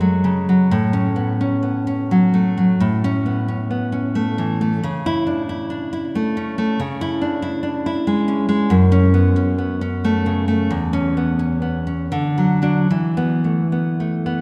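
Nostalgic and tender, this romantic excerpt for solo classical guitar unfolds in a rubato 3/4 at roughly 73-95 BPM, its full-bodied, fingerpicked nylon-string guitar sitting up front from E2 to E4 while a wet church reverb lingers around it, moving from F#m through A and C#m before closing on D at 12.1 seconds and E5 at 12.9 seconds.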